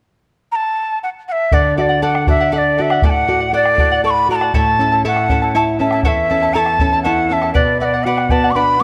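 Set in 6/8 at 80 beats per minute, counted in dotted quarters with a straight feel, this brief cut from a longer Andean folk piece carries a melancholic, earthy mood. A breathy large quena opens alone at 0.5 seconds, its end-blown wooden tone soft in attack, gently vibrato-laden and rolled off in the highs, sitting up front as it carries the melody between D5 and D6. At 1.5 seconds the ensemble joins. A fingerpicked charango adds a bright, shimmering layer from its double strings, some of them octave-doubled. A classical nylon-string guitar, also fingerpicked, fills in the lower register, and a round, closely heard bombo anchors the pulse. The harmony moves from D to A to Bm beneath the quena, and a moderate scoring-stage reverb lends the ensemble a spacious, natural air.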